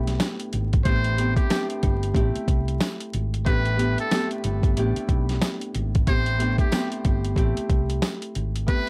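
Over a dry bed of vinyl crackle, a ringing, fingerpicked Celtic harp and a dark, round hollow-body electric bass open this tough, reflective boom-bap hip-hop passage, with gritty, pitched-down sampler drums and their thumpy kick arriving up front at 0.1 seconds, a jingly tambourine tucked in the background, and from 0.8 seconds a buzzy, breathy trumpet with a metal mute playing a jazz-style solo with light vibrato and scooped notes over swung sixteenths and moody minor-seventh and eleventh chords.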